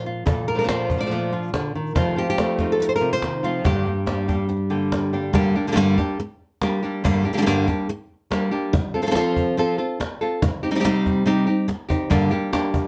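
A fingerpicked acoustic flamenco guitar opens the cut at 0.0 s with a passionate, fiery melody in G minor, sitting up front with a warm tone and audible finger squeak, at 142 BPM in a straight 4/4 and tuned slightly low to A4 = 437 Hz. From 0.3 s a second, brighter flamenco guitar with fresh strings adds fingerpicked stabs touched by slapback echo until 5.3 s, while a snappy cajon with snares, played in a live room, drives the pulse and lands a fill at 11.7 s. The dark production with light reverb carries harmony moving from Bbmaj7 and F7 to Gm, then through F and Cm back to Gm, in a passage taken from a longer piece.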